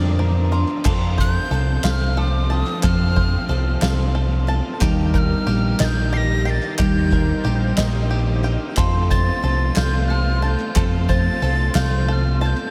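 The mix is dreamy and soaked in a huge ambient reverb, giving this hopeful, warm indie folk piece in a lilting 6/8 a floating, hall-like glow. A breathy tin whistle carries the melody up close, its tongued chiff, vibrato and unsteady playing colored by tape echo. Underneath, a bright, shimmering twelve-string acoustic guitar picks the accompaniment with audible finger squeak, while a twangy bluegrass banjo spins percussive fingerpicked arpeggios through its own tape echo. A dark, round electric bass sits up front, and a soft-mallet drum kit with a boomy kick and dark cymbals stays in the background alongside very quiet, crisp group handclaps that join at 0.7 seconds. A chamber string section holds intimate, bowed sul tasto chords very softly, and a mellow, bell-like glockenspiel with rubber mallets adds a second line that drops out at 0.8 seconds and returns at 8.8 seconds as this cut from a longer piece builds.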